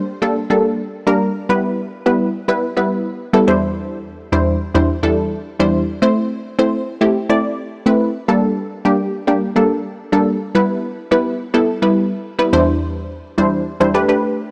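A dry, gritty recording with transformer saturation frames this short pop fragment, touched by light reverb and a digital ambience. The mood is upbeat and carefree, moving at 106 BPM in a straight 4/4 in C major. A single unison pluck synth carries the whole passage alone, from the start to 14.4 seconds, spanning E2 to D5 and sitting up front in the mix. Its lush, punchy sawtooth tone is built from detuned unison voices with a noise layer, shaped by a filter pluck and a moving notch, each note striking with a fast attack and then decaying. The harmony cycles through Gmadd9, Em, Cadd9/E and Am, then returns through Gmadd9, Em and Cadd9/E before settling on Gadd9 near the close of this cut from a longer piece.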